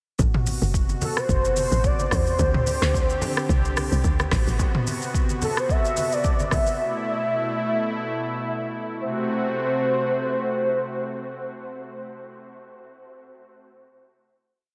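A hypnotic, late-night amapiano piece opens on a smooth, detuned sawtooth pad with chorus and sidechain pumping, joined at once by punchy, woody log drum bass bursts, an up-front deep house kit with a deep kick, syncopated rim clicks and a steady shaker, and ringing, low-tuned congas in the background. At 1.0 seconds a velvety synth lead with chorus, delay and vibrato enters with motif-based call phrases, and the log drum bass stops at 4.6 seconds, with the drums and congas following shortly after. The pad and lead then carry the dreamy, reverb-soaked mix to a final chord at 9.0 seconds.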